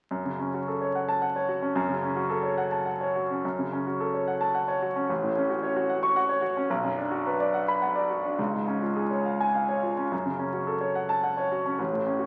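Agitated and passionate, this short excerpt from a virtuoso classical piano study in F# minor moves in a rubato 3/4 at roughly 99-113 BPM. A clear, natural concert grand plays solo and sits up front, reaching from a deep bass at A1 to C#6, from 0.1 to 12.3 seconds. Its harmony passes through F#m, F#m/A, Bm and C# before returning to F#m, all heard through a wet recital hall reverb and the crackle of a very old 78 rpm record.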